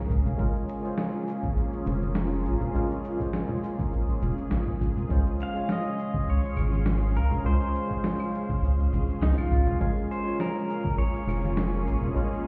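A lightly swung sixteenth-note groove in 4/4 drives this sunny, smooth sunset chillout excerpt. A gritty, thumpy electronic kick and a sampler-style shaker, medium-tuned snare and claves, both compressed and re-recorded in a small room, set the beat, while ringing acoustic congas sit in the background. Underneath, a round, deep analog bass with a filter sweep sits up front, anchoring the changes from Bbm7 to Dbmaj7 and back. A worn, slightly out-of-tune tine electric piano, lightly overdriven through a combo amp, provides the accompaniment, and a lush, detuned unison pad with a sub octave, chorus and phaser holds bright chords with a slow attack and long release. At 5.4 seconds a clean electric pedal steel guitar enters with the melody, played with fingerpicks and slide, its volume swells trailing into delay, and the whole mix is heard muffled as if through a wall, in a stone room reverb touched with light digital ambience.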